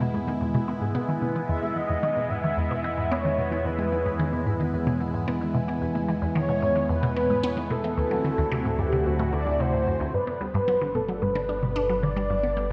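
Ambient, sequencer-driven space music with a luminous, cosmic mood, heard here as a short cut from a longer piece in a straight four-beat pulse. A juicy, squelchy blip pluck sits up front with a resonant, fast-decaying riff treated with phaser and tape echo, while a swirling, bright analog pad holds sustained chords beneath it through phaser and chorus. Under these, a warm, evolving analog drone carries the bass with chorus and tube saturation, fading in over the first 10.1 seconds, and a tempo-synced gated texture pulses softly in the background with its own reverb. From 1.5 seconds a breathy, flute-like synth lead takes the melody up front, with vibrato, ensemble chorus and tape echo. The harmony moves from E to D7 at 8.0 seconds and settles on G at 10.1 seconds, all within an echo-heavy mix and a wet chamber reverb.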